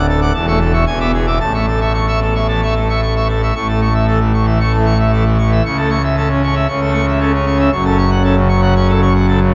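This excerpt from a classical organ toccata moves at 115 BPM in a straight 4/4, its stormy, dramatic character set in A major. A single pipe organ plays alone throughout the 9.5 seconds, registered as full organ with mixtures, and its majestic, brilliant tone sits up front in a romantic voicing that spans from D1 to D6. The harmony opens on A over E, passes through E7 and settles on A by 1.4 seconds, then the second section from 3.6 seconds turns to A over C# and arrives at F# minor. A huge, wet reverb with an 8.4-second decay places the instrument in a vast, echoing space, so each chord rings on long after it is struck. The recording is cut from a longer piece, capturing only this brief, dramatic stretch.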